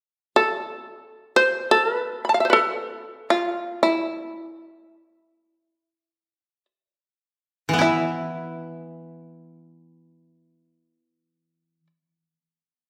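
In free time with the pace slowing through the first 7.8 seconds, this austere, calm excerpt of Japanese chamber music unfolds in the miyako bushi mode on E. A shamisen carries the melody from 0.4 seconds, plectrum-plucked and fretless, its powerful, buzzing, percussive tone sitting up front and ranging from E4 to B5. At 7.7 seconds a koto joins as accompaniment in a lower register, played with fingerpicks and sounding woody and bright, as the music moves into a new section. The two acoustic instruments are heard close, yet a recital hall's reverb lends the performance the spaciousness of a church or concert hall.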